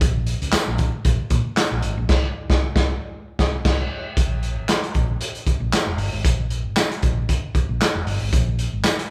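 Funky and driving, this short funk cut at 116 BPM in Bb dorian swings its 16ths as a gritty, saturated breakbeat kit with dark cymbals, a tight kick, handclaps and crash sits up front, a round, punchy hollow-body short-scale bass plays from F1 to Bb2, and a very quiet jingly tambourine enters at 0.5 seconds, with the band hitting accents from 2.1 to 4.2 seconds before moving into a new section in a lightly reverberant live room.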